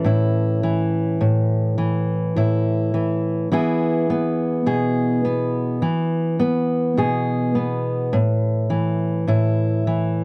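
A dry, close recording with a 1970s studio character puts a lone steel-string acoustic guitar up front, its tone dark with an auditorium-style body. This is a folk piece in A major at 104 BPM in a straight 4/4, heard as a short excerpt cut from a longer performance. The guitar is fingerpicked throughout the 10.2 seconds, ranging from A2 up to A4 and carrying the whole piece by itself. The harmony moves from A to E at 3.5 seconds and settles on an A5 at 8.1 seconds. The mood is anthemic yet nostalgic, with the bare, intimate sound giving the simple progression a reflective weight.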